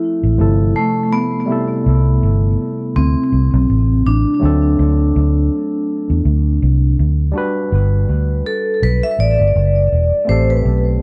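A gently swung sixteenth-note groove in four sets the relaxed sway of this smooth, sweet lovers rock reggae, cut from a longer piece. A dark, round, foam-muted electric bass enters at 0.2 seconds, sitting punchy and up front in the low register. A barky tine electric piano supplies accompaniment, bright and lightly overdriven through a combo amp, with a touch of tape echo. Played with medium hard mallets, the vibraphone carries the melody with a metallic, airy ring and a slow motor vibrato, also treated with tape echo and placed up front, and it takes a solo from 7.3 seconds as the harmony moves from Gmaj7 toward Am9. The sound is dry and close, in the manner of a 1970s studio.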